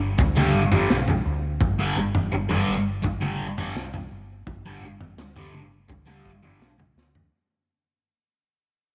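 Lightly reverberant and fading out across its full 7.3 seconds, this mysterious, trippy psychedelic rock excerpt at 84 BPM in G major puts a bright, double-tracked fuzz guitar riff with phaser up front over a woody, growly fretless electric bass and a crunchy breakbeat drum kit with a punchy kick and a dark, rolled-off top, closing on a drum fill at 7.0 seconds.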